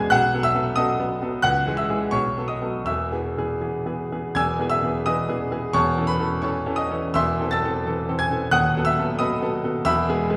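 A romantic character piece for solo piano in E major, this lyrical excerpt moves at 78-93 BPM in a rubato 2/4, its brief span of 10.4 seconds cut from a longer work. The clear, natural grand piano sits up front with short sustain, ranging from D#1 to A6, its opening phrase settling from B7 onto E before a second passage at 4.4 seconds drifts through A/E and a shaded Am/E back toward home. A wet recital-hall reverb of 1.5 seconds wraps the instrument in the resonance of a church or concert hall, lending the whole a warm glow.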